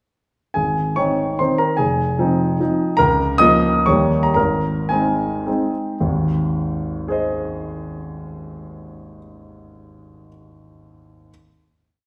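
A polished, present grand piano plays this short, complete romantic dance alone, carrying the tune in octaves over bass and chords that stress the second or third beat of each bar in 3/4. The mood is rustic and proud, in Ab major with dotted rhythms and a rubato feel between 105 and 161 BPM, slowing from 2.4 to 6.0 seconds before a final chord rings from 6.0 to 9.1 seconds. A wet recital-hall reverb surrounds the piano, heard from further back in the room.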